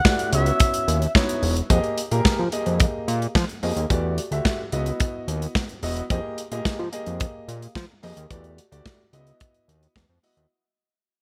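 A fat, sawtooth-edged analog bass sits up front in this short slice of early-eighties boogie funk, its detuned, saturated tone sounding thick and nasal as it enters at 0.3 seconds. An expressive portamento lead opens the passage with a smooth, chorused line touched by vibrato and digital delay, but it lasts only until 1.1 seconds. A studio drum kit of punchy kick, snare and hi-hat drives a straight 4/4 groove at 109 BPM, while a dark grand piano adds mellow, boxy accompaniment with long sustain and audible action noise. The harmony moves through minor eleventh chords, cycling from Dbm11 to Fm11 and Em11, which lends a late-night, slick mood. Light reverb and a small-room ambience frame the bright 1980s-style digital production, and a fade-out runs from 1.7 seconds to the end of this section cut from a longer piece.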